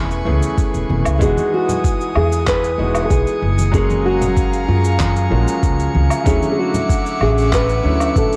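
Heard through worn, warbling cassette tape with light small-room ambience, this relaxed, smooth sunset chillout cut in E major at 95 BPM sets a thumb-plucked nylon-string guitar melody, bathed in tape echo and shimmer reverb, over clear grand piano accompaniment, an airy, breathy detuned pad with chorus, a woody pizzicato upright bass up front, a gritty, thumpy sampled kick entering at 0.6 seconds, compressed shaker, woodblock and handclaps, soft-handed congas ringing in the background, and a glassy drifting-harmonics texture arriving at 1.7 seconds, all moving through Amaj9, Emaj9, F#maj9 and Dmaj9.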